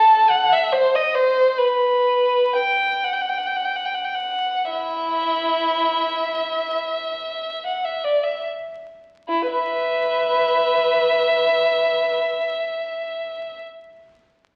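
Lonely and yearning, this brief fragment of a longer classical piece for unaccompanied violin unfolds in a free, rubato 6/8, the single bowed violin sitting up front with a warm tone, soft attack, expressive vibrato and gliding portamento as it slows between 0.3 and 9.3 seconds before turning to a new section, heard through a reverberant recital hall and the crackle of a very old 78 rpm record.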